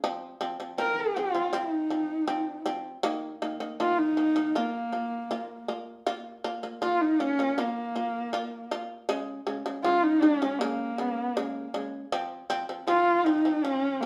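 A bowed horsehead fiddle carries the melody in this windswept, solemn piece of Mongolian traditional music, its husky, nasal tone shaped by expressive vibrato and portamento from a single player. It enters at 0.8 s, just after a plectrum-plucked shamisen opens the track at 0.0 s with arpeggios whose buzzing, percussive attack gives the accompaniment a powerful, fretless bite. Both instruments sit up front, with the fiddle the louder of the two and a boxy character on its horsehair strings. The music moves at a steady 80 BPM in 4/4 with a straight feel in Bb minor, and the same passage is played twice, the second pass beginning at 6.1 s. The pair sound like they are playing live together in one room, wrapped in a wet studio reverb, and the recording is a short excerpt cut from a longer performance.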